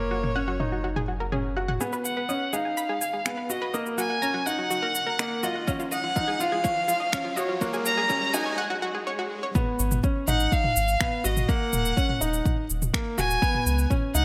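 A rich, bowed violin with smooth vibrato carries the melody of this melancholic, hypnotic piano and strings electronica, cut from a longer piece at 124 BPM in G# dorian. Beneath it sit a soft, felt-muted upright piano riff with audible action noise and tape echo, and a round sine sub bass with sidechain pumping. A detuned sawtooth analog pluck with chorus plays arpeggios until 9.5 s, alongside a minimal click kit of overdriven finger snaps, shaker and toms; a background riser and swell arrive at 4.0 s to steer a build-up and brief break, a deep, layered electronic kick joins at 5.7 s, and the drop follows over chords cycling through G#m, D#m and C#sus2 in a lush hall reverb.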